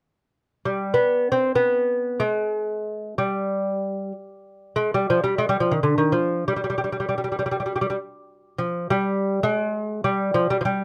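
Persian music in free time, this short excerpt features a solo lute, set in dastgah homayun with a tuning of A4 at 439 Hz. The mood is festive yet passionate, carried entirely by the single instrument, which enters at 0.7 seconds and plays through to 10.8 seconds. The lute is fingerpicked on nylon double strings, some of them octave-doubled, giving a delicate tone that stays within a range from D3 to C4. Placed up front and captured with close, detailed microphones, its acoustic voice sounds intimate and clear. A light reverb adds a touch of space around the playing.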